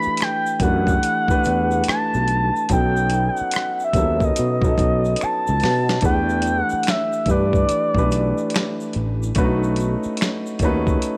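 Set in a studio reverb with the drums, bass, piano and lead up front, this soulful, introspective neo-soul R&B excerpt has a swung, unhurried feel over chords moving from Em9 to B9 and Em7. A gritty, compressed sampler-style drum kit with a thumpy kick, medium-tuned snare and rim clicks sits beside a growly, tube-saturated fretless bass with ensemble chorus, a concert grand piano with deep bass, and a vintage, band-limited layer of egg shaker and finger snaps. A smooth sawtooth synth lead with a soft attack, vibrato and ring modulation carries the melody until 9.0 s, and the drums play a fill at 5.2 s.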